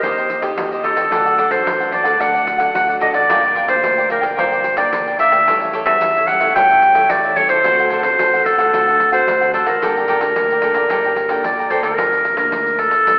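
A clear, roomy clarinet carries the melody up front in a classical style, sounding distant even as it leads this bittersweet, nostalgic samba and choro passage cut from a longer piece. Beneath it, a crisp, picked cavaquinho supplies bright accompaniment until it drops out at 12.0 seconds, while a full-bodied, fingerpicked nylon-string guitar adds warm support in the background. A punchy fingered electric bass, direct and amped, sits low in the mix, and a jingly pandeiro with a small-room sound keeps the straight 4/4 pulse going. The harmony moves through chords such as Gm7, A7 and D7 before settling on Gmadd9. The whole recording is bathed in a wet, stage-like reverb that suggests a church or concert hall, yet it also carries a narrow telephone-like coloring.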